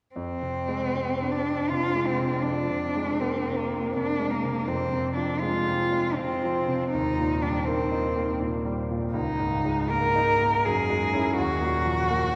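Mysterious and hazy, this fragment of an impressionist classical duo in a rubato 3/4 pairs a warm, expressive bowed cello melody, sung with vibrato, soft attacks and portamento, with clear, open grand piano accompaniment rich in deep bass, both up front yet heard from further back within a long, wet cathedral reverb that hangs over harmonies moving from Fm6 to D#madd9.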